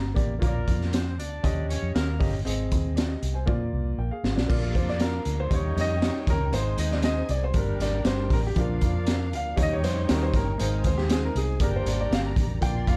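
Dark, dry production frames this excerpt of uptempo 1960s-style soul at 118 BPM in Bb mixolydian, danceable and uplifting in a straight 4/4. A woody upright piano with audible action noise opens with a brief fill and carries the accompaniment. A round, foam-muted fingered electric bass sits up front beside a gritty, saturated garage drum kit with a boomy kick, high-tuned snare and pumping small-room sound, while a tight, jazz-style horn section with light vibrato plays a second line in the background. A drum fill leads into the second section at 4.5 seconds, where a lush, bowed symphonic string section joins with tape echo and a very quiet tonewheel organ adds mellow sustained chords with key click; moments later a concert grand piano with deep bass takes a natural-sounding solo melody. The harmony cycles through Bb, Eb7, Ab and Gm.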